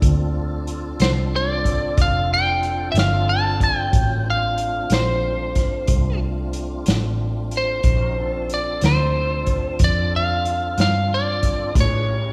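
A slow 12/8 blues at 61 BPM in D minor, this brooding, smoky excerpt rides a muffled, lo-fi vintage drum kit of hi-hat, tight kick and medium-tuned snare, with a dark, round, foam-muted fingered electric bass and a full tonewheel organ holding sustained chords through overdrive, chorus vibrato, key click and a slow rotary speaker. At 1.0 s a slightly broken-up, compressed lead guitar enters up front with a picked, warm melody. The harmony moves from Dm7 to Bbmaj7 to A7b9, all set in the moderate reverb of a concert hall.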